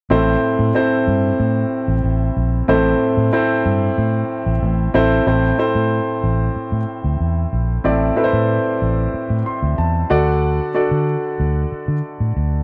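The sound is dry and close, like a 1970s studio session, with only a light touch of reverb. This short, moody cut of 1980s-style pop sits in a straight 4/4 and carries a dramatic air. A concert grand piano plays the accompaniment throughout, warm, intimate and polished, with audible action noise, deep bass and long sustain, and it sits up front. Beneath it, a vintage muted fingered electric bass sounds dark, round and punchy, its amped, foam-muted tone also held close to the listener. The music dwells on A minor before moving into a second section at 5.3 seconds, where the piano adds a fill from 9.1 seconds and the harmony shifts to D at 10.1 seconds.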